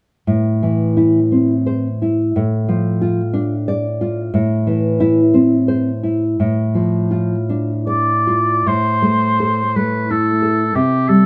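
A warm oboe with light vibrato carries the melody from 7.9 seconds, singing in a classical style over a dark, woody nylon-string guitar that has been thumb-plucking its full-bodied accompaniment since 0.3 seconds. This elegiac, yearning romantic duo moves in a rubato 3/4 at 72-93 BPM in A minor, its harmony rocking between Am and Dm/A before reaching C5. Light reverb gives the fragment, cut from a longer piece, a roomy glow.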